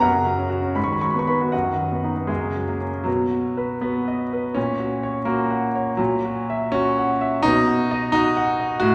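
A clear, up-front grand piano plays alone throughout this sparkling, heroic virtuoso classical study in B major, moving in a rubato 6/8 at 75-87 BPM in dotted quarters, its intimate, polished tone carrying long sustain and audible action noise into a wet recital-hall reverb, as a short opening phrase gives way at 3.1 s to a second section that settles back onto B in this portion cut from a longer piece.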